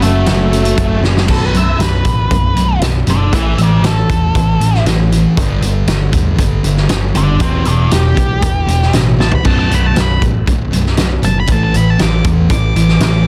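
A growly, overdriven picked bass drives this dark, angsty quiet-loud alternative rock excerpt, where a twangy, lo-fi guitar through a small old amp plays brief arpeggios until 1.3 seconds, while an octave-fuzz lead guitar plays from the start and takes a solo from 1.3 seconds over two thick fuzz guitar riffs sitting in the background and a loose indie drum kit with a fat snare and punchy kick, up front and saturated, that shifts out of half time and rolls through fills at 1.0 and 9.2 seconds, all in a dense, heavily limited mix with little reverb.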